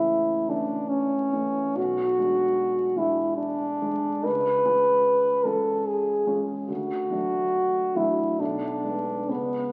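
A warm, distant French horn sings a melancholic, yearning melody up front in this romantic classical excerpt for horn and baby grand piano, moving freely in 3/4 at around 65-77 BPM over the piano's mellow, long-sustaining accompaniment and harmonies that drift from A/C# through C#7 to D, all wrapped in a recital hall's 1.5-second reverb and the crackle of a very old 78 rpm record.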